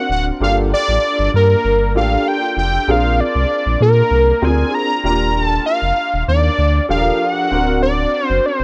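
Set in a small room with light reverb, this brief excerpt of polished 1980s jazz-funk pop moves with an urban, upbeat swing as a fat, warbling, detuned sawtooth lead with chorus and vibrato carries the melody up front over clear grand piano chords, shimmering with ensemble chorus, and a deep, full sine sub bass doubled at the octave, the harmony passing from Gm7 through Bb7 and Ebmaj9#11 to Daug7.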